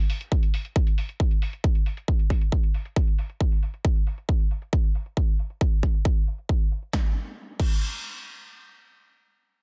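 This bittersweet, emotional uplifting trance passage is cut from a longer piece and opens at 0.1 s with an analog drum machine playing crash cymbal, hi-hat and a tape-warm snare, all softened by low-pass filtering and set back in the mix. An electronic kick drum joins at 0.3 s, layered, overdriven and punchy, and it sits up front far louder than the drum machine. A filter sweep moves over the drums through the opening stretch, in a straight 4/4 feel. The sound is wrapped in a digital ambience, with a dense, heavily limited modern master. Near the end the music moves into a new section, and both drum parts stop at 7.7 s.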